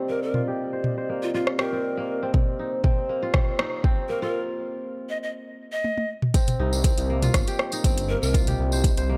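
Afro house with a driving, spiritual mood: a dark, moody analog pad and a crisp, ringing fingerpicked kora pump under sidechain, the kora drifting through a filter sweep and analog delay, while breathy, bright cane pan pipes carry a close-miked melody with vibrato and chiff. An up-front electronic drum kit with metallic hats, rim clicks and toms builds alongside a deep kick that enters at 2.3 seconds, moving into a break and a drum fill before the drop at 6.3 seconds. There, a jingly tambourine arrives, joined moments later by a rumbling, detuned saw bass, and the whole piece has a dry, gritty hardware sound in a small room.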